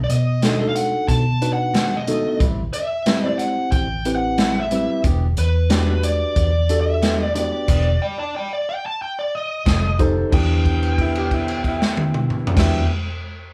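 A roomy, live-band sound with moderate reverb frames this brooding, smoky straight-eighth soul blues excerpt in E minor at 91 BPM, where a dark, smooth overdriven lead guitar sings the melody over a round, punchy foam-muted bass, a gritty, saturated breakbeat kit up front with dark cymbals, clean tine electric piano accompaniment and compressed clean guitar stabs tucked in the background, all moving from B7#9 through Am7 to Em7 before a stop at 7.7 seconds, an F7 turn, and a held note from 10.3 seconds as a brilliant, woody upright piano enters at 11.0 seconds.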